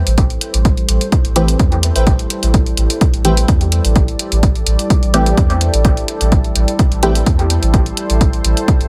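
A punchy, tape-tinged electronic kick sits up front at 127 BPM in 4/4 alongside an analog hi-hat with a light 16th-note swing, both carrying the boxy character of a small room. This dub techno excerpt in A minor has a nocturnal, deep mood, resting on a single Am7 chord throughout. A round, soft sub bass built from triangle and square waves holds the low end, while a moody, detuned sawtooth pad with a sub octave fades in slowly beneath chorus and reverb, both pumping against the kick. At 1.4 seconds, two stab parts arrive: a muted, evolving, filter-plucked sawtooth chord stab treated with chorus, phaser and dub echo, and a crisp, wave-folded wavetable stab in the background that also trails dub echo. Both stabs drop out at 7.2 seconds, leaving the groove, bass and pad to carry on through the digital ambience to the end.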